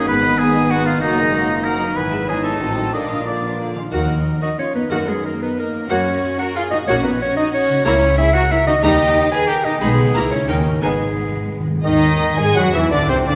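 Set in a reverberant hall, this stormy, urgent fast romantic orchestral movement in 3/4 drives ahead at 167-193 BPM in Eb minor, turning to G# minor at 7.9 s, with a lush, bright violin section carrying the melody above a softer second violin line, a punchy clarinet, and smooth violas, cellos and distant double basses. A ringing concert harp keeps arpeggios flowing throughout, while an up-front oboe, an airy silver flute, a mellow bassoon and very quiet, dark French horn chords colour the opening and return at 11.8 s. A timpani fill with medium mallets enters at 10.8 s just before the close of this fragment cut from a longer piece.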